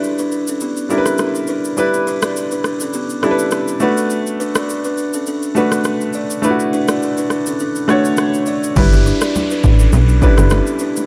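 Dark, lightly reverberant production frames this joyful, romantic afrobeats excerpt at 103 BPM with a gentle sixteenth-note swing, built on G6 and D6 chords from a smooth, vintage grand piano up front and a punchy, layered electronic drum kit of kick, rim click, shaker and crash. A woody, buzzing kalimba with a hollow-box ring and delay carries the riff from 0.2 seconds. At 8.8 seconds a funky, plucky analog bass pushes forward, joined by very quiet acoustic congas and bongos and an electronic downlifter.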